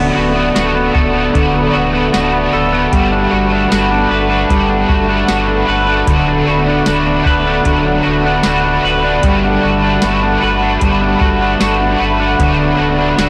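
Melancholic and ethereal, this dream pop piece drifts at 76 BPM in 4/4, cut from a longer work and alternating between D6 and Gmaj9 chords. A clean, bright electric guitar plays up-front arpeggios with subtle chorus and digital delay, while a biting overdriven guitar adds accompaniment colored by harmonic tremolo and analog chorus, and a warbly, lo-fi, nostalgic pad holds slow-swelling sustained chords soaked in chorus and its own reverb. Underneath, a deep sub bass with an octave carries transformer saturation, and a soft vintage rhythm box with a crisp snare, metallic hats and tambourine enters at 0.6 seconds, all set in light reverb within a blown-out, overdriven recording.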